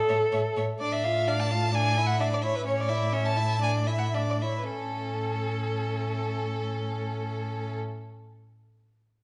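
A clear viola opens at 0.0 seconds, and the full string quartet is sounding a moment later in this quick, lively and graceful classical-period movement in A major, set in a straight 2/4 at 104-132 BPM. The first violin carries the melody with a focused, vibrato-laden tone and a smooth top, while the second violin adds an even, bowed second line beneath it and the viola fills in the accompaniment. Up front, the cello anchors the bass on a low A with an expressive, portamento-inflected sound. The harmony moves from A major through D minor over A and a suspended A chord, and the tempo slows between 2.2 and 4.7 seconds before a new section begins on A. A moderate recital-hall reverb gives the ensemble a natural sense of space, and the high end is rolled off above 10.4 kHz in this short passage cut from a longer piece.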